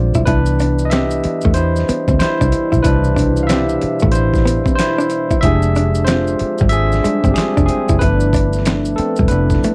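The barky tine electric piano leads this sensual, soulful neo-soul excerpt, bright and clean through a combo amp and placed up front as it solos across the full 9.7 seconds while also carrying the accompaniment. Set at 93 BPM in 4/4 with a swung sixteenth-note feel in C major, the passage moves from Cmaj9 to Fm6 at 5.4 seconds and reaches G13 at 8.0 seconds. Beneath it, a vintage muted fingered electric bass sits round and punchy, foam-muted and amped, while a boom bap sampler-style kit of kick, snare and hi-hat brings a gritty, pitched-down thump with overdrive and the character of a large room. Maracas and a group handclap add a faint, saturated percussive layer, and a dark, picked hollow-body jazz guitar supplies a compressed second line. Far in the background, a dark French horn section holds soft-attack chords with light vibrato, all within a dry, close 1970s-style studio sound touched by light reverb.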